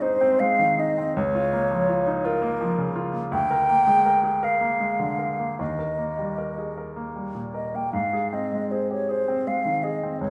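Set in a wet recital-hall reverb, this serene, tender excerpt of romantic classical music in a rubato 6/8 places a close-miked, hollow, mellow silver concert flute up front, singing the melody with vibrato and tongued notes, over a clear, polished baby grand piano that carries the accompaniment from start to finish.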